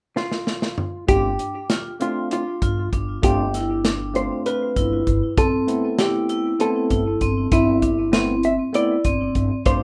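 A drum fill on a punchy, dark, small-room country kit opens alongside a clean, fingered hollow-body jazz guitar melody with plate reverb and delay, and at 1.1 s a barky, lightly overdriven tine electric piano, ringing hard-mallet vibraphone arpeggios and a woody pizzicato upright bass on G join this intricate, bright progressive instrumental in 7/8 at 196 BPM in G mixolydian, moving from G7sus4 to Amadd9/G in a rough home-demo mix with a wet studio ambience.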